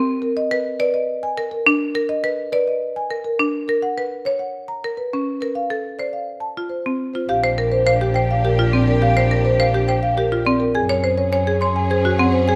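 A bright, buzzing hardwood marimba struck with hard mallets drives dry, percussive arpeggios from the opening of this propulsive, hypnotic minimalist classical passage in 3/4, while a second, rosewood marimba with medium mallets carries a woody melody above it, and at 7.3 s a rich bowed string section with vibrato adds soft-attack sustained chords over a smooth, even bowed double bass, all captured closely with light reverb.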